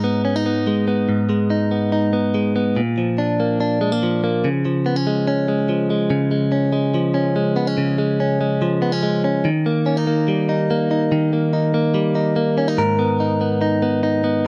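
A straight 4/4 pulse at 144 BPM drives this short, wistful and restless indie pop passage, cut from a longer piece and played by a single clean electric guitar in G# dorian. The bright, picked guitar is recorded direct, compressed and placed up front with a light reverb, ranging from G#2 to A#4 as it moves from G#m through A# and C#, reaches D# at 9.4 s, and settles on a G#madd9 chord at 12.8 s, where the final section begins.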